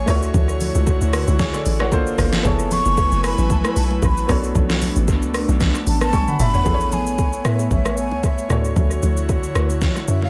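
The mix is dry yet echo-heavy, leaving this short cut from a longer amapiano piece sounding close and soulful, with a warm mood. It moves at 114 BPM in 4/4 with a light swing on the sixteenths, in A major. A hollow, bouncy log drum bass sits loudest under an up-front, overdriven electronic R&B kit that carries soft kick, deep snare, smooth hats, rim click, shaker and toms through dub echo, while very quiet congas and bongos add hard-handed, acoustic texture from 0.3 seconds. Over this, a breathy concert flute with a straight tone sings the melody through its own dub echo, a boxy grand piano plays accompaniment, and an airy, detuned pad with chorus holds long, slow-blooming chords. The harmony drifts through rich extended chords such as Dmaj9, Gm11, F#m11 and Bm9 during the opening drop. A drum fill at 6.1 seconds leads into a new section at 6.7 seconds that lands on Amaj9 before returning to Dmaj9.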